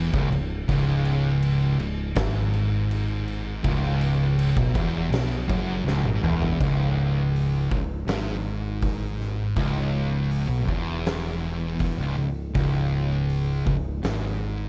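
Stoner and doom metal in C# minor at 81 BPM, this ominous, sludgy passage cut from a longer piece pairs two distorted fuzz guitars playing a low riff, one compressed and the other thick and up front, with a growling picked bass pushed through overdrive and tube saturation, while an oversized low-tuned drum kit with a fat snare, punchy kick, dark cymbals and gritty saturation plays a fill from 5.9 to 6.6 seconds into the next section, all set in a small room with a dark production and a faint mains hum.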